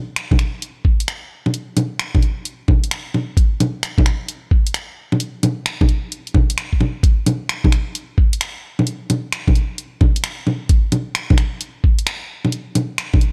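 A swung 16th-note groove at 131 BPM in 4/4 drives this wistful, nocturnal future garage fragment, cut from a longer piece. A layered, tape-warm garage kit of bongos, finger snaps and hi-hat sits up front from 0.2 seconds, over a muffled, thumpy sampler-style kick that is compressed, louder and also up front. Both drum parts carry a touch of studio reverb within an otherwise dry, gritty recording.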